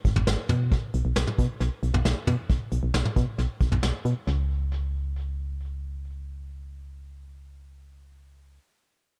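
Cool and melancholic, this synth-pop excerpt moves at 135 BPM in a straight 4/4, built on a punchy, round FM bass with a fast attack and dark, decaying tone that sits up front from G#1 to B2 throughout its 8.6 seconds. A vintage brush drum kit with a medium-tuned snare, punchy kick, hi-hat and toms plays only until 4.2 seconds, its warm, rolled-off top treated with tape echo. The mix is echo-heavy with light reverb, and the bass carries on alone once the drums drop out.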